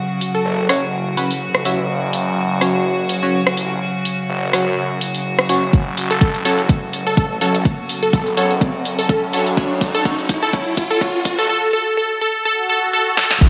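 A swung 4/4 groove at 125 BPM drives this bouncy, swaggering bass house build-up in F# minor, where earthy bowed chamber strings hold sidechain-pumped chords, a layered house kit with an up-front snare, crash, hi-hat, ride and rim click runs throughout, a swirling, thick phased detuned saw bass sits beneath, nasal band-passed chord stabs flicker with phaser and tape echo, a punchy electronic kick with a tape-warm edge arrives at 5.7 s, a catchy, full-bodied plucky unison lead on A4 returns at 6.1 s, and an electronic riser begins at 7.3 s before a swell at 12.6 s, inside a lush hall reverb.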